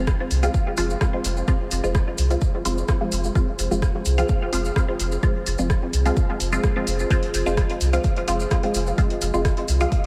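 A muted, detuned dub chord stab with phaser and dub echo opens alongside a round sub bass, an overdriven deep kick, a vintage rhythm box with metallic hats and rim clicks, and a grainy cabasa in this nocturnal, meditative dub techno excerpt at 128 BPM in F minor, the stab and bass pumping with sidechain, while a moody, pumping ambient pad with chorus drifts in the background from 0.3 seconds under a dreamy cathedral reverb.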